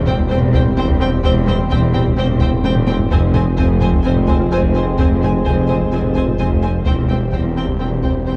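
Vast and tense, this cinematic excerpt blends orchestra and electronics in a hybrid film-score style at 128 BPM in 4/4, set in F harmonic minor and moving from C/E to F minor at 3.1 seconds before returning to C/E at 6.9 seconds. A deep low end stacks a rich, bowed double bass section, a mellow solo tuba with a soft attack, and a snarling, growling distorted saw bass, while a cello section adds expressive weight just above them. Mellow French horns hold sustained chords with a vintage, classical character, supported by a very quiet, organ-like pad with a slow attack and long release. From 0.1 seconds a bowed chamber violin section carries a smooth, vibrato melody high above, with symphonic violins and a clear, focused viola section sitting lush in the background, and a very quiet, crystalline wavetable pluck traces arpeggios through a filter sweep and chorus. A close taiko ensemble struck with heavy sticks drives the piece and plays a fill between 2.6 and 3.1 seconds, all set in a dark production with moderate scoring-stage reverb.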